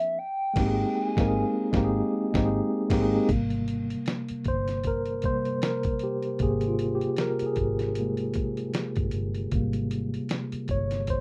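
R&B and neo-soul with a soulful, smooth mood and a swung sixteenth-note feel, this dry, rough home-demo cut opens with a hollow, woody synth lead that carries the melody for only the first 1.7 seconds, colored by chorus, phaser and slapback echo, over a mellow tine electric piano playing an Abmaj9 chord. At 0.6 seconds a round, dark muted electric bass and a dusty, gritty sampler-style drum kit with a thumpy kick, fat snare, hi-hat and crash join in. From 3.3 seconds the electric piano takes a solo through to the end.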